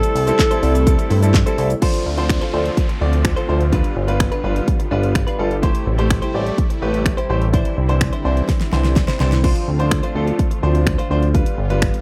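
A straight dance-pop groove drives this confident, bittersweet excerpt, built on an up-front electronic drum kit with a punchy kick, fat snare, bright hats, shaker, finger snaps and handclaps, plus a crash and a fill around 8.5 seconds. A forceful, scooped alto saxophone with vibrato and slapback echo opens the piece with a brief lead phrase that ends by 1.3 seconds. Underneath, a glossy, nasal synth bass with pulse-width movement and a plucky filter enters at 0.2 seconds and pumps against the kick, as do a brilliant grand piano and a soft-attack supersaw pad whose phaser and filter swell keep it evolving in the background. A twangy, compressed clean electric guitar picks a riff through lush chorus, sitting back in the mix, while a downlifter sweeps faintly between 1.8 and 5.6 seconds. The sound is dry and close, in a 1970s studio style, moving through minor-seventh and dominant chords.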